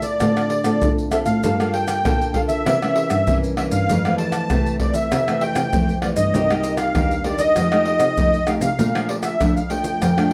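A reedy musette accordion carries the melody up front, its shimmering, dark tone touched by plate reverb as it sings between D5 and A5 in this yearning yet lively excerpt of samba and choro at 98 BPM in a straight 4/4. Beneath it, a fingerpicked nylon-string guitar supplies classical-style accompaniment, while a bowed cello, played sul tasto with light vibrato and a soft attack, holds the bass line in an intimate, close sound. Maracas, pandeiro, surdo and tamborim drive the percussion with hard hands and a deep surdo, their compressed, saturated sound sitting up front. All four parts play together throughout the 10.3 seconds, moving through a single section whose chords run from Dm7 through Gm9, C7b9 and Fmaj7, then on to Cm7, F9 and Bbmaj7. A moderate studio reverb gives the ensemble a sense of room, and the passage is cut from a longer piece.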